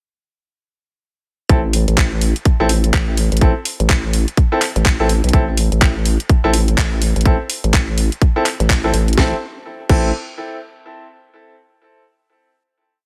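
At 1.5 seconds this short, bouncy and swaggering bass house piece starts straight into its drop at 125 BPM in A minor. The drums, bass and piano all enter together, with a swung sixteenth-note feel. A tight, tape-warm kick sits up front in a four-on-the-floor pulse, while a programmed garage kit adds a cracking snare and handclaps on the backbeat, bright open and closed hats and a crash. Underneath, a dark, nasal wobble bass works through a formant filter, its saturated, resonant phrases shifting in wobble speed, with chorus and sidechain pumping. A clear baby grand piano plays syncopated chord stabs, moving one shape in parallel, with digital delay and its own sidechain pumping. The drop gives way at 9.2 seconds to a final A minor chord, and the parts stop around 10 seconds in a dry mix.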